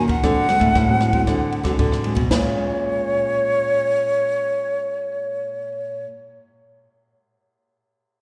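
Bathed in the long, wet reverb of a concert hall, this short clip of lively, bittersweet samba and choro in Bb minor at 115 BPM features an up-front breathy metal jazz flute with soft attack, vibrato and an unsteady edge carrying the melody, a small fingerpicked nylon-string guitar with audible finger squeak in accompaniment, and a woody nylon-string bass line on old strings, while a compact cocktail kit with punchy kick, high-tuned snare, rim click and dark ride and crash cymbals plays only until 2.4 seconds, as the harmony moves from D7#11 to Bbm7 at 2.3 seconds.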